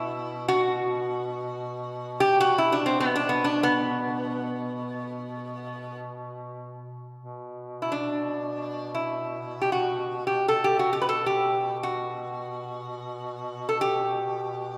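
Solemn and mournful, this Caucasian folk lament sets an up-front, metallic, nasal lap resonator guitar, played with fingerpicks and slide, carrying the melody over a distant, roomy duduk drone on B2 with vibrato, soft attacks and scooped notes, the pair bathed in a long church reverb across this 14.8-second excerpt.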